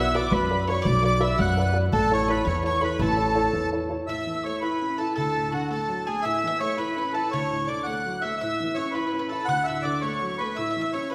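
A rollicking, cheerful Celtic jig in a straight 6/8, cut from a longer piece and set in the resonant wash of a church or concert hall. A reedy, full accordion carries the melody up front, its smooth tone giving the tune a rich, dark weight. Beside it, a bowl-back mandolin picks a second line with the shimmer of double strings, while a metal mid whistle floats higher as another second line, airy and distant, with chiff on its tongued notes and an unsteady vibrato. A dark upright piano sits close as accompaniment, mellow and worn, its woody, slightly detuned, boxy sound fading quickly. A pizzicato upright bass with thumpy gut strings anchors the opening before stopping at 4.0 seconds, and the harmony moves from B minor to A before settling into a rocking back-and-forth between D and A.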